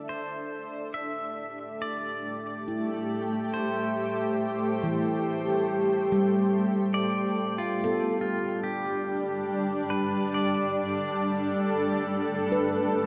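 Soaked in a lush hall reverb with a dreamy, softened top end, this serene, spacious ambient excerpt at 70 BPM sets an up-front granular cloud pad, blurred and evolving under a filter sweep, alongside ringing, meditative handpan arpeggios sent through analog delay, while a clean, compressed electric pedal steel guitar, played with fingerpicks and slide, carries a melody of volume swells from 0.1 seconds as the harmony moves from Am7 to G at 7.0 seconds.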